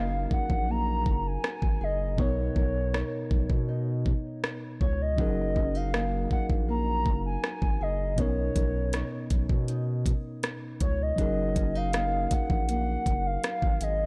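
Tender and smooth, this contemporary R&B excerpt moves at 80 BPM in F# major, rocking gently between F#69 and Bmaj9 chords. A hollow, woody clarinet-like synth lead carries the melody up front with chorus, vibrato and tape echo, over a worn, slightly out-of-tune tine electric piano, thumb-plucked nylon-string guitar arpeggios with finger squeak and tape echo, and a deep, saturated sub bass. An electronic drum kit with a knocking kick, metallic hats and rim clicks enters at 0.3 seconds, all set in a dark production with light reverb.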